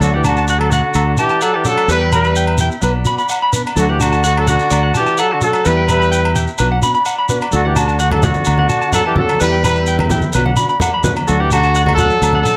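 Highlife guitar band music in a sunny, carefree mood, this is a short passage cut from a longer piece that cycles through D, Em and Bm chords in a straight 4/4 feel. Up front, a punchy trumpet carries the melody with pop-style vibrato and a roomy, distant sheen from slapback echo, while a raspy tenor saxophone growls a breathy, subtone second line beneath it with scooped notes and a smooth top. A bright, clean semi-hollow electric guitar plays picked arpeggios touched with subtle chorus and slapback echo, and in the background a full-bodied, fingerpicked nylon-string guitar adds accompaniment as a tonewheel organ holds sustained chords through a slow rotary speaker. A round, dark fingered electric bass sits up front, a grainy, mellow shekere plays along with it, and ringing agogo bells enter at 0.2 seconds in the background. Low-tuned congas played with soft hands join at 8.1 seconds, adding a live-room percussive lift for the closing stretch.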